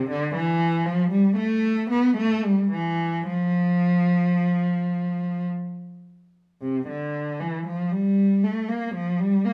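Set in a moderate stone-room reverb, this short, flowing and radiant cut from a baroque-style classical suite movement in F major features a single warm, expressive bowed cello, placed up front and singing with vibrato and portamento across a rubato 3/4 pulse of roughly 52-61 BPM.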